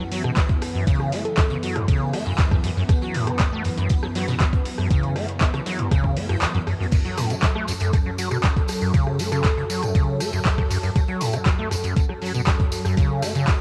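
Raw and hypnotic, this acid house excerpt at 119 BPM in F# minor sits on a single F#m7 chord, with a squelchy, saturated sawtooth acid bass riff with overdrive and analog delay up front beside a thumpy electronic kick, a smooth detuned analog pad under chorus and sidechain pumping, an overdriven analog drum machine with crash, handclaps, hi-hat and rim click, a gritty oversized low-tuned kit of hi-hat, snare and tambourine in the background, brief tine-like thumb-piano-like synth plucks at 1.3 and 9.3 seconds, a jingly tambourine from 6.9 seconds, and the kick dropping out at 6.4 seconds, all with a cassette home-recording feel in a small room.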